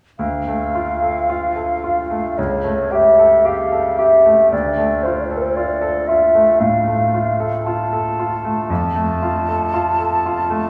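Elegiac and yearning, this short excerpt of a romantic classical duo in D minor moves at a slow 57 BPM in 4/4 with a rubato feel, as a mellow, hollow wooden flute with airy vibrato and a crisp attack carries the melody from 0.2 seconds over a brilliant, up-front grand piano accompaniment, both resting in the generous reverb of a concert hall as the harmony passes from D minor through A7 over C-sharp back to D minor and onto F major.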